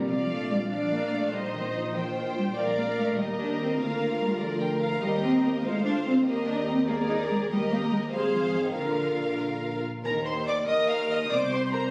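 Heard as if captured on a phone from within a recital hall, this cut from a longer piece carries a moderate hall reverb around a rich, bowed string sound. It is a quick, spirited classical-period movement for string orchestra in a straight 6/8, cheerful from the first bar. The violin melody sits high and sounds focused yet distant, while a second violin line, expressive and up front, plays just beneath it. Violas fill in the accompaniment with an even, smooth-topped tone, and cellos and double basses share the bass line with vibrato, the basses close and lush. All five sections play together throughout, and the harmony turns toward a new tonal centre at 5.0 s before a brief closing section begins at 10.0 s.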